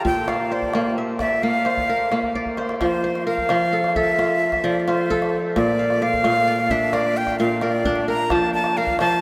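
Hypnotic and warm, this excerpt from a longer piece draws on West African traditional string and xylophone music, moving in 12/8. A fingerpicked kora sits up front, spinning ringing, crisp arpeggios across its range. A breathy, bright metal flute carries the melody beside it, with a straight tone, a reedy color and a distinct chiff at the start of each note. Deep calabash percussion enters at 0.1 seconds and sounds distant, as if heard across a large room. A drum fill at 2.2 seconds leads into a second section at 2.8 seconds, as the harmony rocks between Bb and F, and the recording is bathed in a huge, wet ambient reverb that evokes a vast, echoing space.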